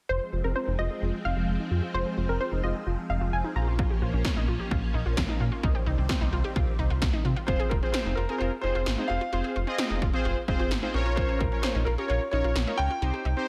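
This nocturnal, cool synth-pop excerpt opens with a punchy, detuned unison pluck line on tape echo, swirling phased string-machine chords, a chorused analog pluck arpeggio under a filter sweep, and a deep, round analog bass up front, before 80s electronic pad drums with a gated snare arrive at 3.8 s and, from 7.5 s, a natural-toned baby grand piano carries the melody over fat, warbling analog synth brass.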